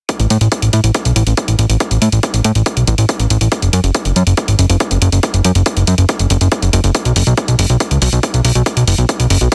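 The recording is dry, dense and heavily limited, a modern master cut from a longer uplifting trance piece. It drives at 140 BPM in a straight 4/4 with a bittersweet, driving mood. A punchy, layered electronic kick sits up front from 0.1 seconds, overdriven and re-recorded in a large room, with high-pass filtering on both the drum and its room sound. An electronic hi-hat with an analog, tape-warm character plays alongside it. From 0.2 seconds a fat analog bass joins up front, its detuned sawtooth and square waves saturated and thick, with a fast-attack filter pluck, sustained notes between F#1 and A2, and sidechain pumping. All three parts hold together through the whole section to 9.5 seconds.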